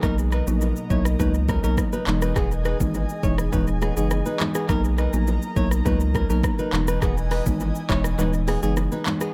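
A straight 4/4 afrobeats groove at 103 BPM drives this romantic, joyful clip. An up-front electronic drum kit with deep kick, dark hats, handclaps, rim click and shaker is touched by tape echo, and a thick, saturated sub bass sits alongside it, while a woody, rustic marimba and a bright, boxy fingerpicked flamenco guitar riff with tape echo move over Bmaj7 and Emaj7 chords. A mellow, breathy pad with chorus and very quiet vintage congas and bongos round out the echo-heavy mix, and the kick drops out at 8.2 seconds.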